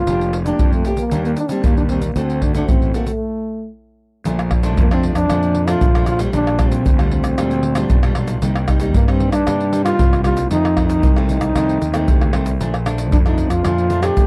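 Bittersweet and nostalgic, this samba and choro excerpt moves at 115 BPM in a straight 4/4, settling into Bb major from 4.3 s after a brief stop from 3.2 s. A mellow, close-miked trombone carries the melody with jazz-style vibrato up front, over a bright, fingerpicked nylon-string guitar with fresh strings and audible finger squeak, and a growly, overdriven fuzz electric bass. A deep surdo, egg shaker, pandeiro and tamborim played with hard hands sit close and forward in a dry, 1970s-style studio sound touched by light reverb.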